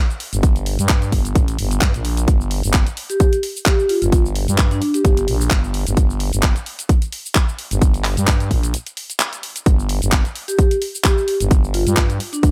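Bass house in G minor at 130 BPM, this gritty, bouncy passage swings its 16ths and rides a growling, thick FM bass with overdrive and sidechain pumping, set up front beside a punchy, layered electronic kick. A house kit of handclaps, hi-hat and shaker sits lower in the mix, while a vibraphone with medium hard mallets and slow motor vibrato adds a metallic, ringing melody in a boxy small room, entering at 3.1 seconds and returning at 10.5 seconds, after a brief break from 8.7 to 9.7 seconds. The sound is dry, with little reverb.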